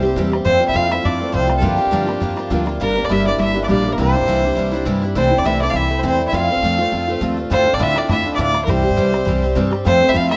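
Wild, dark and lively, this Celtic reel excerpt sets a nasal, reedy fiddle up front on the melody over a shimmering hammered cimbalom second line with slapback echo, an octave-doubled picked twelve-string guitar with audible finger squeak, a woody pizzicato upright bass, and a boomy bodhran in the background that drops out at 2.7 seconds and returns at 7.5, all in a rough home demo mix.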